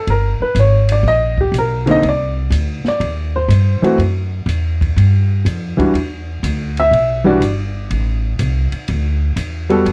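A worn, warbling cassette-tape sound with drifting pitch and light reverb colours this short jazz piano trio excerpt, which is cut from a longer piece. The mood is sophisticated and swinging, moving at 122 BPM in 4/4 with a 68% swing on the eighth notes in G major. The upright piano carries the melody as a solo from 0.0 seconds, sitting up front with a woody, boxy tone and short sustain as it ranges from D3 to E5. Beneath it, the pizzicato upright bass is growly and close, its steel strings roughened by tube saturation. The acoustic drum kit sits further back in a small room, with dark cymbals, a medium-tuned snare, a boomy kick and a rolled-off top across hi-hat, ride, snare and kick. The harmony moves from G through Cmadd9, Esus2, a rootless Dmadd11 and Em7 to Am, closing on Dsus2 at 8.9 seconds.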